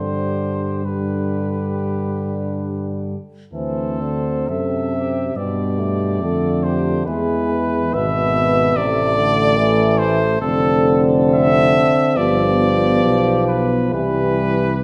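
A lyrical, hymn-like classical passage for brass band opens with the full ensemble together at a gentle 69 BPM in 4/4, the beats stretched and eased with rubato. Up front, a warm cornet with light vibrato sings the melody, while a mellow French horn section adds a soft-edged second line in the background, a clear euphonium and a distant, roomy second euphonium fill the accompaniment, and a smooth-topped tuba anchors the bass. The harmony moves from G through D7, E, Am and G7 before settling on C, all in the moderate glow of a recital hall, as this fragment of a longer piece closes at 14.8 seconds.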